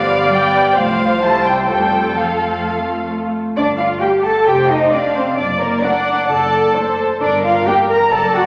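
A wet, spacious scoring-stage reverb surrounds this brief cut from a longer classical-period movement for string orchestra, giving the muted, con sordino sections a distant, veiled quality. The mood is stormy and urgent, carried by a quick, straight pulse in four. The first violins sing the melody with vibrato and a soft attack, while a second violin line sits up front in the mix, and violas fill in the accompaniment before dropping out at 7.7 s. Cellos and double basses anchor the bass, the basses lending a dark, bowed floor beneath the ensemble. The opening phrase moves from G7 through F/C and C to F, then a new section begins at 3.6 s on G5, passing through F5 and D/F# before settling on Gm.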